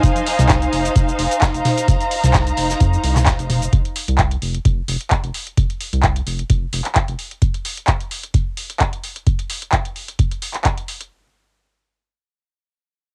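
This gritty, trippy acid house excerpt opens all at once on a single minor-seventh chord, with an up-front electronic kick and a booming analog drum machine laying down metallic hi-hats, handclaps, cabasa and toms in a lightly swung groove. Beneath them sits a round, dark analog bass, deep and sustained with a fast attack, its wave-folded tone thickened by tube saturation and set pumping by sidechain compression. A lush, bowed studio string section hovers high above with smooth vibrato, also pumping and carrying a cassette-tape tint, until it drops out at 3.7 seconds. A very quiet, cloth-damped acoustic kit adds a fat, muffled snare and hi-hat from a small room before falling away at 3.6 seconds, and the bass stops at 7.2 seconds, leaving the kick and drum machine to carry on. The whole track has a dry, close, homemade cassette sound with little reverb.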